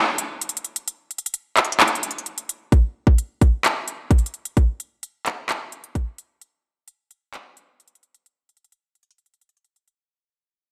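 Hip hop at 130 BPM in 4/4 with a half-time feel, this short excerpt is cut from a longer piece and carries an eerie, brooding mood. A trap drum kit is the only part, entering at 0.2 seconds and running until 10.0 seconds with handclaps, hi-hat and kick drum. Its electronic, produced sound features a hard-clipped kick and crisp hats, sitting up front in the mix. The opening stretch up to 2.7 seconds works as a break, and the whole clip fades out across its length. A moderate recital-hall reverb with a digital ambience gives the kit a sense of space around it.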